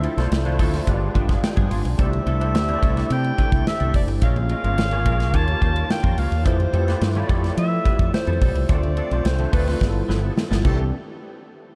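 Polished 1980s jazz-funk pop with a glossy, urban mood at 107 BPM in C major, where a breathy, subtoned alto saxophone with light vibrato carries the melody from a distance through a diffuse ambient delay, a barky, gritty overdriven tine electric piano with ensemble chorus supplies chords and a fill at 0.9 seconds, a twangy, clean electric guitar with chorus plays a background riff, a round, dark fretless bass and an up-front studio drum kit with a tight kick drive the groove toward a drum fill at 9.8 seconds, and soft-handed, low-tuned congas sit very quietly beneath it all over jazzy extended chords.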